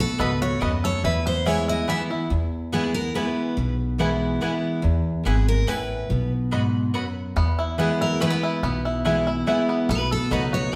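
Bluegrass in a steady, straight three-beat feel, virtuosic and joyful, heard as a short cut from a longer piece. A bright, full-bodied picked steel-string guitar carries the melody up front, while a second picked guitar, warmer in tone, fills out the accompaniment beneath it from low to middle range. A twangy, percussive banjo played with fingerpicks rolls out arpeggios at the start, drops away at 2.3 seconds, and returns at 7.4 seconds. A woody mandolin with doubled strings adds stabs from 0.2 seconds, and a dark, thumpy pizzicato upright bass on gut strings anchors the low end. The harmony moves simply between two chords, and the band plays live together in a stone room whose wet reverb gives the whole ensemble a lively, resonant air.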